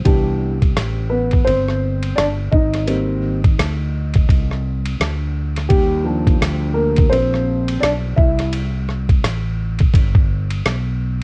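A dark concert grand piano carries a mellow, intimate solo with audible action noise, deep bass and a vintage, cassette-tape grain softened by plate reverb, before it stops at 8.5 s. This smooth, cool jazz-hop excerpt moves at 85 BPM in 4/4, with a 61% swing on the sixteenths and tuning set to A4 = 439 Hz. Up front beside the piano, a fretless electric bass sits low, sounding warm through a direct, amped tone and a lush chorus. It plays until 11.2 s. A dusty, soul sampler-style drum kit of hi-hat, thumpy kick, ride cymbal and rim click sounds compressed and gritty, with its own tape-warm cassette coloring. The harmony drifts from Cmaj9 to Abmaj9 and Ebmaj9 before settling on Cmaj7, all within a light-reverb, home-cassette sound cut from a longer piece.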